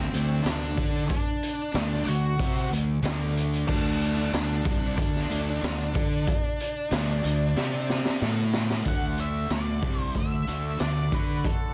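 The raw garage drum kit sits up front, with a boomy kick, a medium-tuned snare, hi-hat and crash that sound gritty and saturated under a rolled-off top. This is an anthemic, cathartic stretch of quiet-loud alternative rock at 93 BPM in a straight 4/4, set in D mixolydian and cut from a longer piece. A bright, growly fingered bass with fuzz and overdrive anchors the low end, a double-tracked, compressed fuzz guitar riff sits in the background, and a dark octave-fuzz lead guitar carries the melody. A drum fill arrives at 7.6 seconds as the chords move from D5 through C5 and A5, landing on D at 8.9 seconds, where a lead guitar solo begins and a twangy, clean guitar enters in the background with arpeggios shaded by tremolo and tape echo. A small room lends a short reverb, and the dense, heavily limited master carries vinyl crackle.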